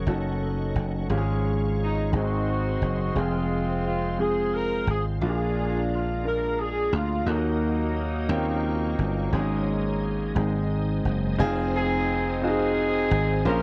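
A dry, close, 1970s-style studio sound with light reverb frames this jubilant, uplifting gospel passage in a straight 6/8, where a punchy, foam-muted thumbed slap bass sits up front beneath a clear, natural grand piano and a reedy tonewheel organ on a slow rotary speaker with chorus vibrato, while a very quiet French horn section holds loose classical-style chords until 11.4 s and a tight, mellow, vintage jazz-style horn section carries the melody with light vibrato from 1.8 s.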